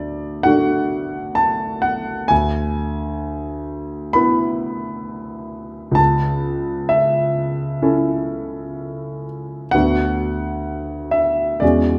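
Set to a rubato 4/4 at 65 BPM, this hopeful, passionate romantic character piece in A major, tuned to A4 = 443 Hz and cut from a longer work, features a solo concert grand piano, up front with deep bass, natural tone and short sustain, ranging from C#2 to B5 over 12 seconds as the harmony moves from D through E7/D and A/C# to Bm/D, all set in a moderate recital hall reverb.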